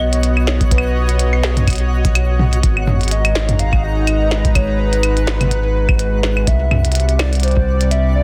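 Cerebral and intricate, this short IDM excerpt moves at 125 BPM in 4/4 with a light swing on the sixteenths, its chords shifting from Badd9 to Abm7 and then Csus2 at 6.5 seconds. A warbly, nostalgic lead carries the melody between B4 and F5, its detuned square-and-sawtooth tone softened by chorus, vibrato and a tape echo into something mellow and vintage. Beneath it, an analog pad holds smooth, dark sustained chords with a slow attack and long release, roughened by a grainy 12-bit sampler character and chorus, while a round, deep sawtooth-and-sine bass sits up front between Ab1 and C2. A glitchy electronic kit of claves, clicky hats, a tiny soft-clipped snare and toms sounds close and small-roomed, joined at 0.6 seconds by a deep, tape-warmed electronic kick. In the background, a twinkling granular FM texture adds bright, sparkling octave-up shimmer bathed in its own reverb, all within a dense, heavily limited modern master.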